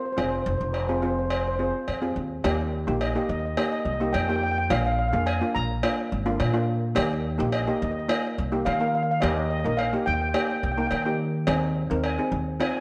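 A lead steel pan with a mellow, shimmering tone carries the melody from the very start of this bouncy, sunny calypso excerpt at 106 BPM, while a second pan, struck with hard rubber sticks and sitting up front, fills in the harmony from 0.2 seconds. A woody, thumpy pizzicato upright bass anchors the low end, and a distant cowbell rings out as if in a large room. The harmony moves from F minor into a new section at 2.4 seconds built around E-flat and B-flat seventh chords, all set in a moderate recital-hall reverb.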